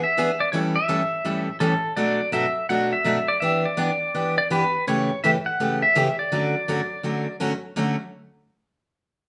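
A clean, twangy electric pedal steel guitar and a full-bodied dreadnought acoustic guitar begin together, both up front, in a cheerful, down-home country excerpt at 166 BPM in D major with a swung eighth-note feel. The compressed steel carries the melody with fingerpicks, slide and volume swells, while the bright picked acoustic accompanies through seventh chords moving from E7 and A7 to Bm7, Em7 and Dmaj7. The band sounds live in one room with a wet studio reverb, and the steel stops at 7.4 s, just before the acoustic guitar ends at 8.0 s.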